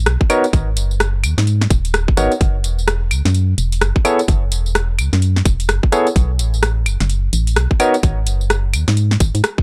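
A barky tine electric piano stabs through this short excerpt of two-step UK garage, its bright, lightly overdriven chords pushed through a combo amp with tape echo trailing behind them from 0.3 to 7.9 seconds. Underneath, a hollow, organ-like FM bass with a fast attack and dark, decaying notes pumps against the sidechain, sitting up front in the mix from the very start. An electronic kick drum lands tight and up front, while a garage drum kit fills out the groove with a woody snare, metallic hi-hats, rim clicks, claves and tambourine, all swung at 61% on the sixteenths. At 128 BPM in F# minor, the harmony moves from G#m11 through F#7(no3) and B5 to G#7(no3) at 7.8 seconds, giving a late-night, bouncy mood. The sound is dry and gritty, with little reverb, like a hardware recording.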